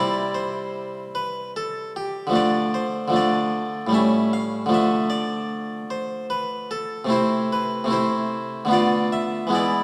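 Introspective and solemn, this brief passage from a baroque-style suite movement in 3/4 unfolds at 75 BPM with a free, rubato feel, tuned to A4 = 441 Hz. A solo Flemish-style harpsichord on a single set of strings sits up front, its plucked tone bright and spanning A2 to F5 as the harmony moves from C through D minor and A7 toward a shadowed Bm7b5 over D. A dark, warm production and a wet recital-hall reverb with a 1.8-second decay wrap the instrument across its 9.8 seconds.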